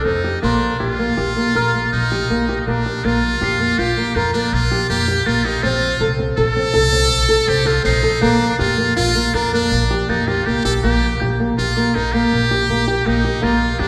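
A restless, shimmering piece of contemporary chamber music in 7/4 at 162 BPM opens with all four parts together: a buzzy, forceful trumpet with metal mute up front, playing in a jazz style with scooped notes and light vibrato, alongside thumb-plucked flamenco guitar arpeggios with audible finger squeak. Beneath them a woody, dark pizzicato upright bass anchors the harmony as it moves through Ebmaj7/Bb, F/Bb and Bb, while a soft, bell-like glockenspiel struck with rubber mallets rings in the background until 12.6 seconds. The whole excerpt sits in the lush reverb of a concert hall or church.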